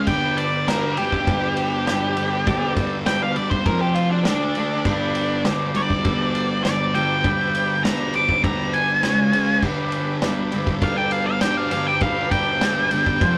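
Raw and swaggering, this garage rock cut moves at a straight 100 BPM in 4/4 and sits in G mixolydian, clearly lifted from a longer piece. A dark, octave-fuzz lead guitar takes a solo across the whole 13.4 seconds, its picked melody ranging from D4 up to D6 and standing up front. Beneath it, a double-tracked fuzz guitar plays a picked, distorted riff in the low register, with a warm edge. An overdriven combo organ enters at 0.1 seconds with buzzy sustained chords carrying a light vibrato, mixed well back, while a vintage acoustic kit of tight kick, medium-tuned snare, ride and crash adds dark, rolled-off cymbals. The harmony rests on G, dipping briefly through F5, D5 and C#5 before returning home, and the whole take has the rough, tube-saturated grit of a rehearsal-room recording in a small, wet booth.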